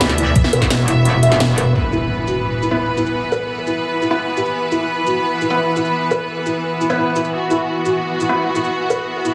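A metallic, wobbling FM bass sounds from the very start of this short cut of dark technical drum and bass alongside the strings, stabs and kit, saturated and up front with chorus, before it stops at 1.7 seconds. Biting, intense symphonic strings hold sustained chords throughout, with light vibrato and a sidechain pumping, while bold, bright sawtooth stabs in the manner of an orchestra hit punch through with built-in reverb and tape echo. A felt-muted upright piano, soft and boxy, plays arpeggios from 0.2 seconds, low-pass filtered and swept, with sidechain pumping and tape echo. The kit brings a cracking snare, hi-hat and shaker, low-pass filtered and re-recorded in a small room, a knocking electronic kick appears only briefly, and an electronic impact lands at 1.8 seconds as the music moves into its next section. The mood is tense and mechanical, with a heavily compressed, radio-like sound and moderate digital room reverb.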